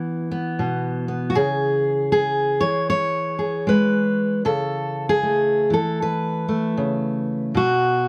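Peaceful and gentle, this short excerpt of solo fingerstyle folk at 78 BPM in a lightly swung 4/4 features a dark, full-bodied fingerpicked steel-string dreadnought guitar, up front and closely miked in light reverb, moving from E5 through C#m to Aadd9/C# before the chords drop away at 7.5 seconds.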